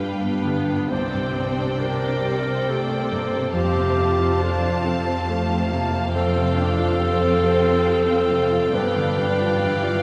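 A solo clarinet with a soft attack carries the second line in a classical style in this tender, uplifting cinematic film score excerpt. Above it, a bowed symphonic violin section holds the melody high and even, with vibrato and a smooth top, while a second, lush violin section adds its own line beneath. A distant viola section fills in the accompaniment in the background, its expressive vibrato colored by portamento, and a focused, close cello section anchors the bass with a rich, bowed tone. A clear, intimate grand piano with audible action noise rounds out the accompaniment from the background. The music moves at 69 BPM in a rubato 3/4 in F major, drifting through G7, Csus2 and Fadd9 before returning to G7, all bathed in the long, wet reverb of a cathedral-like hall.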